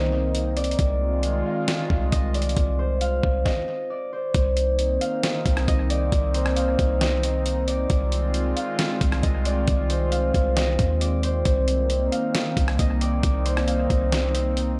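Hazy and spacious, this atmospheric cloud-rap excerpt moves at a half-time feel, with a thumb-plucked concert harp carrying a ringing melody through analog delay above a warbling, nostalgic pad whose detuned chords are washed in chorus and reverb and pump against the sidechain. Underneath, a deep, boomy 808-style bass with a noise layer sits up front beside a gritty, pitched-down sampler-style drum kit of thumpy kick, rim click, snare and hi-hat, whose first hit lands at 0.3 s. The harmony shifts between Cm7 and Fm7/C, a brief stop from 3.5 to 4.3 s breaks the flow, and the mix is dry in room sound yet heavy with echo.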